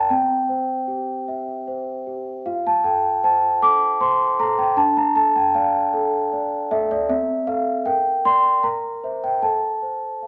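In a gentle, straight 3/4 at 77 BPM, this dreamy, innocent classical lullaby in F major, tuned to A4 = 437 Hz, is played by a large solo celesta spanning C4 to D6. The celesta sounds bell-like, delicate and mellow, its soft felt hammers giving a full, ringing tone that sits up front in a recital hall with a moderate 1.4-second reverb and a touch of small-room ambience. Cut from a longer piece, the passage moves from C through F and D minor, then slides through a descending chain of inversions toward a rootless F/A at 9.4 seconds.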